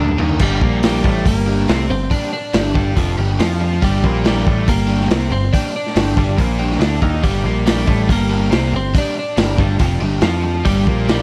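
Moody and cool, this indie rock passage is cut from a longer piece and moves in a straight 4/4 feel inside an echo-heavy mix. A vintage acoustic drum kit opens with a short fill before settling in up front. Recorded in a small room, it sounds lo-fi and muffled, with dark cymbals, a medium-tuned snare, a tight kick and a rolled-off top, all carrying dub echo. Two guitars play riffs from the first second: a bright, overdriven electric guitar, and a raw garage guitar sitting in the background with overdrive, analog chorus and dub echo. A picked electric bass holds the low end, direct and up front with a warm tone. At 0.4 seconds a clean, compressed twelve-string electric guitar enters with a bright picked melody that trails its own dub echo through to the end.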